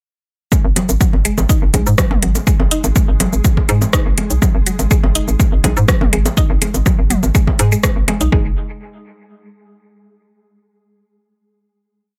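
Minimal techno at 123 BPM, sparse and hypnotic, built on a punchy, overdriven four-on-the-floor kick and a hollow, bouncy FM bass rolling in staccato with tube saturation and sidechain pumping, joined by an overdriven house kit of metallic closed hats, cabasa and rim clicks, background bongo and tom blips in cross rhythm with dub echo, a woody, chorused mallet-like pluck repeating a 10-step loop that drifts against the bar, crisp detuned wavetable chord stabs echoing sparsely from 1.7 seconds, and a very quiet, swarming drone holding a high note from 2.3 seconds, in a dry mix that closes on a final chord at 8.3 seconds.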